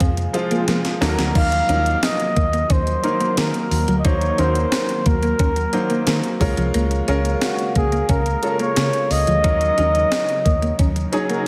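1980s-style pop in Eb dorian at 89 BPM, this short, urgent and moody cut sets a breathy, whispered flugelhorn melody up front with tape and slapback echo over clear grand piano, a glassy FM pad, and a twangy, chorused clean electric guitar riff tucked in the background. A round, foam-muted fingered bass and a thumpy, overdriven 12-bit drum machine with crash, hi-hat, snare and tambourine drive the groove through Fm, Ebm, Bbm7 and Ebm7, while mellow detuned synth brass stabs appear at 0.5 seconds and again at 11.3 seconds. A drum fill closes the opening band accent, the piano adds a closing fill at 10.8 seconds, and a lush hall reverb gives the whole an arena-sized sound.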